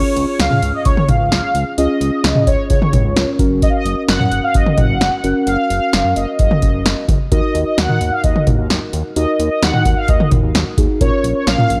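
A straight 4/4 electro drum-machine groove at 130 BPM sits up front from 0.2 s, its deep kick, punchy snare, metallic hats and toms giving this wistful yet bright synth-pop excerpt in Db major a tape-tinged drive, while a fat, detuned sawtooth bass holds down the low end. Muted, felt-like synth keys with a warbling vintage character and chorus fill in the accompaniment over chords moving from Db to Gb, Ebm and Bbm. On top, a mellow, round synth-brass melody with vibrato, chorus, phaser and tape echo carries the tune, all captured in a gritty hardware sound with light reverb.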